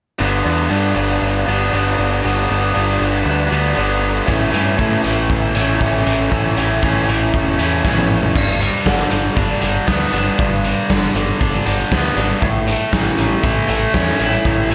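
A bright, lo-fi electric guitar leads this carefree, upbeat indie rock excerpt, picking an overdriven riff up front with a slapback echo from 0.2 seconds. A growling picked electric bass plays underneath from the start, its overdriven tone both direct and amped. At 4.3 seconds a raw garage drum kit enters, gritty and saturated, with a punchy kick, a medium-tuned snare, hi-hat, crash cymbal and toms, all with a rolled-off top. A drum fill at 7.9 seconds leads into the second section, while the harmony moves between G and A at a straight 118 BPM in 4/4. Moderate lush hall reverb over small room ambience gives the mix a big arena sound.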